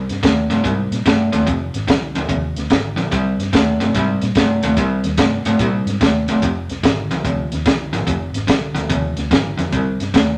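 Mournful and brooding, this electric blues shuffle excerpt sets an up-front, overdriven semi-hollow guitar riff over a round, foam-muted vintage fingered electric bass and a compact cocktail drum kit whose punchy kick, high-tuned snare and hi-hat sound dark and rolled-off, all moving from C minor through F minor chords in a moderate studio reverb.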